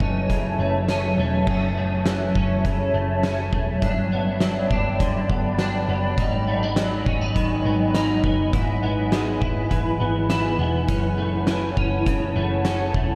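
A cloudy, evolving granular pad sits up front in this ethereal, haunting dream pop excerpt at 102 BPM, its blurred, wave-folded sustained chords drifting through F#m7, Gmaj7, G#m7 and E/G# with built-in reverb. A clean, warm electric guitar picks arpeggios through ensemble chorus and analog delay, while a round, amped hollow-body bass holds the low end. An oversized, low-tuned drum kit with a punchy kick, fat snare, hi-hat and crash carries a saturated, gritty character, and the whole mix is soaked in a huge ambient reverb.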